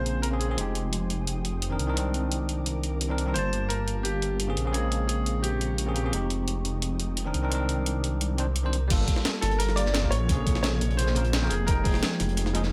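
Melancholic and soulful, this liquid drum and bass excerpt pairs a bell-like, barky tine electric piano with sampler grit and tape echo, a brilliant baby grand piano melody with audible action noise, an ethereal pad with chorus, phaser and sidechain pumping, and a menacing, detuned saw bass up front, over a pitched-up, compressed sampler-style breakbeat kit, until the drop at 8.9 seconds adds a thumpy electronic kick and a dark, crunchy breakbeat kit with filtered hats in the background.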